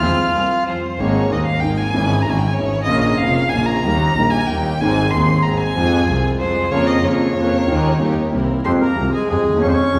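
Tango at 188 BPM in a rubato 3/4 and Ab major, melancholic and sultry: a reedy, dark bandoneon opens briefly and returns at 8.7 seconds, while a bowed violin with vibrato and a smooth top takes a solo from 1.0 to 8.7 seconds, over an up-front vintage grand piano with deep bass, biting string-section stabs set distant in the background, and a focused, bright bowed double bass that enters at 1.0 seconds, all heard in a reverberant recital-hall space with vinyl crackle in this excerpt.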